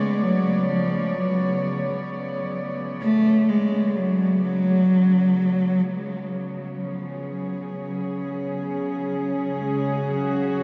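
Cavernous and dark, this short ambient fragment, cut from a longer piece, moves at a slow 64 BPM in a straight 4/4. A single bowed cello carries the melody up front, its woody, close tone shaded with vibrato and trailed by tape echo. Alongside it, a chamber cello section, also up front, holds sustained chords with a gut-string, period-style sound, reedy yet smooth at the top, touched with light vibrato. Both parts play throughout, resting on B minor before shifting to F#sus2 at 5.9 seconds. A huge, wet reverb with a 7.9-second decay surrounds them, and the production leans dark and warm.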